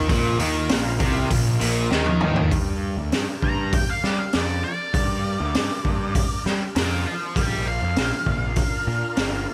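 The cranked stack guitar sits up front from the start, a bright, double-tracked overdriven riff in the low register that plays only until 2.5 s, capped by a drum fill. This is a gritty, smoky slice of blues rock and southern rock at 99 BPM in G minor, moving from a Bb5 power chord to Gm and then Bb at 7.4 s. Underneath, a fuzzed, punchy picked electric bass sits close to the listener throughout, while a raw garage kit of hi-hat, kick, snare and toms sounds saturated and mid-forward, with a high-tuned snare, boomy kick and rolled-off top. From 3.4 s an octave-fuzz lead guitar takes a solo, dark and distorted, coloured by wah and slapback echo. Farther back, an overdriven tonewheel organ holds thick sustained chords with key click, chorus vibrato and a slow rotary speaker, all in a dry room with little reverb.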